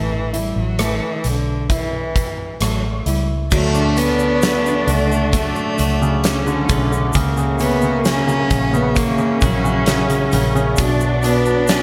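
In a straight 4/4 pulse, this tender, hopeful pop ballad opens with a focused, bowed solo cello melody over woody upright piano and a dark, round, muted electric bass, joined at 0.3 seconds by a huge arena drum kit with a fat snare and punchy kick, then at 3.5 seconds a lush cello section adds a second line while an ethereal glass harmonica holds chords, a very quiet twelve-string electric guitar picks bright arpeggios and a grainy egg shaker sits in the background, with light reverb.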